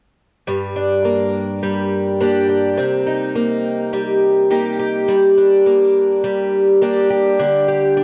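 A dark, warm mix set in a moderate plate reverb frames this brief, autumnal, wistful folktronica piece in G minor at 104 BPM in a straight 4/4. A picked twelve-string acoustic guitar plays alone and up front from 0.5 to 8.0 seconds, its shimmering, octave-doubled fresh strings and boxy archtop body roughened by vintage 12-bit sampler grit and trailed by digital delay, with an audible finger squeak. The chords move from Gm through Cm7 and back to Gm before resting on Dsus4, and the passage is cut from a longer piece.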